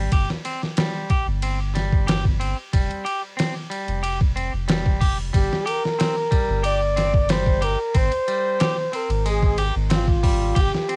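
A clean electric guitar and a soft dub sub bass open this dark, cinematic trip hop excerpt together, the guitar's bright, twangy picked arpeggios colored by cassette tape and tape echo, the bass sitting deep, round and sustained up front. From 0.1 seconds a sampler-style drum kit settles into a straight 92 BPM groove in 4/4, its pitched-down, compressed sound giving a thumpy kick, a medium-tuned snare, hi-hat and ride cymbal a gritty, tape-warm character. The harmony in G minor moves from Gsus4 through Fsus2 and Gm to Abmaj7. At 5.4 seconds a trumpet with a bucket mute enters as a jazz-style solo voice, veiled and muted, its scooped notes and vibrato roughened by vintage 12-bit sampler grit and cassette tape. The sound is dry and close, with the intimate, lo-fi feel of a home recording on cassette.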